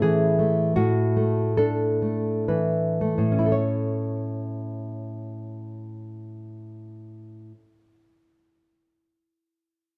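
A moderate recital-hall reverb surrounds a single up-front, warm nylon-string classical guitar, thumb-plucked with audible finger squeak, in this tender, sunny romantic fragment in A major. Played rubato in 3/4 at roughly 54-84 BPM, it slows over the opening 3.5 seconds as the harmony moves from A to E5/A and back to A. The guitar ranges from A2 to C#5 and falls silent at 7.9 seconds.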